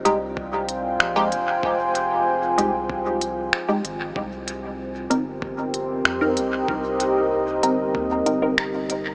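A moody, evolving pad of detuned sawtooth voices with a sine sub octave opens this short ambient dub excerpt, sitting up front with slow-attack sustained chords and a long release, thickened by chorus and its own reverb. Beneath it, a soft, round sub bass of triangle and square waves holds sustained low notes from the very start. Almost at once, a filtered chord stab arrives with a muted, plucky attack and short decay, treated with phaser, analog chorus and dub echo. An up-front electronic kit adds finger snaps and smooth, tape-tinged hi-hats sent through dub echo, while a compressed, thumpy, muffled kick enters at 0.4 seconds. The harmony moves from Fm9 to Cm7 at 4.2 seconds, and a huge, long-tailed reverb combined with a small-speaker sound gives the piece a spacious, meditative atmosphere.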